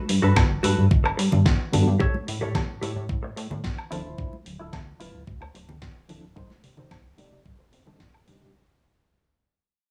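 Nu-disco with a groovy, sunny mood, cut from a longer piece and fading out throughout, where a glossy, pulse-width-modulated synth bass sits up front beside a thumpy, tape-warm electronic kick, a gritty sampler-style kit of hi-hat, snare and woodblock, and close, dry congas in the background, while a clean, direct-recorded electric guitar riff with lush chorus and slapback echo and the filtered bass both carry filter sweeps, and a reedy electric piano with fast tremolo and sidechain pumping joins at 1.7 seconds over chords moving from Gmaj9 to A7, Dm9 and Cm6.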